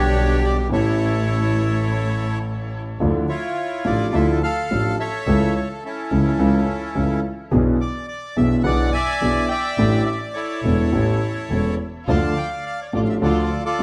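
A reedy, bright bandoneon sits up front with tape echo, carrying a sultry, passionate tango melody in D harmonic minor at a rubato 106 BPM over deep-bassed concert grand piano accompaniment and a focused, bowed double bass with vibrato, while a lush, biting string section adds very quiet stabs from 0.0 to 2.9 seconds and again from 12.1 seconds, the whole excerpt set back in a wet studio reverb and resolving to D minor at the close.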